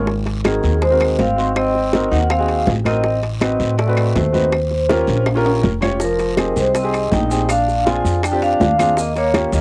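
This danceable, sophisticated Afro-Cuban jazz excerpt moves at a brisk 162 BPM in straight 4/4, driven by a bed of close, dry hand percussion set back in the mix: round, low-tuned bongos struck with hard hands, bright medium-tuned congas played with soft hands, ringing metal-shelled timbales and woody claves, with a raspy guiro up close and grainy, mellow maracas joining from a live room at 6.0 seconds. Up front, a dark, thumpy pizzicato upright bass on gut strings anchors the low end, while a natural-sounding grand piano comps underneath with a touch of plate reverb. The melody comes from a metallic vibraphone played with medium hard mallets, its slow motor vibrato captured in a boxy small room with a cassette-tape tint. A brilliant, gritty trombone carries the second line in a growling jazz style, close-miked, with vibrato and scooped notes. The harmony cycles through Ab9, Adim7, Eb9, Fm7 and Bb9 before landing back on Eb9, with a drum fill at 5.3 seconds marking the midpoint, all heard through the moderate ambience of a small booth in a home cassette recording.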